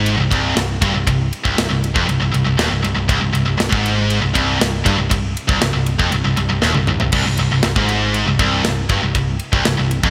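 A straight 4/4 pulse at 119 BPM drives this dark, epic heavy metal passage in C minor, cut from a longer piece, with a tight acoustic drum kit entering at 0.1 s and pushing kick, snare, toms, ride and crash cymbals up front, then rolling into a fill at 6.6 s. Two high-gain guitars share the low riff, both picked, distorted and bright, while a picked electric bass growls underneath with an amped, punchy tone. A moderate hall reverb with a 2.0-second tail lends a lush space to the 1980s-style digital production.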